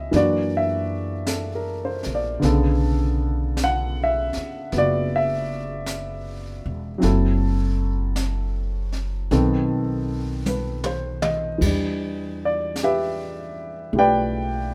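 A slow jazz ballad at 52 BPM in 4/4 with a swung eighth-note feel, this intimate, smoky passage is cut from a longer piece and sits in B minor before moving to E minor at 11.6 seconds. A baby grand piano carries the accompaniment up front, its natural tone close enough that the action noise of the keys can be heard. An upright bass, plucked and woody with a thumpy low end, anchors the harmony alongside it, while a brushed drum kit plays softly behind both, with dark cymbals, a high-tuned snare and a boomy kick. The chords travel from F#aug7 through Bm9, F#m7b5 and B7b9 before settling on Em7 as the new section begins. A drum fill from 10.5 to 11.6 seconds marks that turn, and a light reverb gives the trio a gentle sense of room.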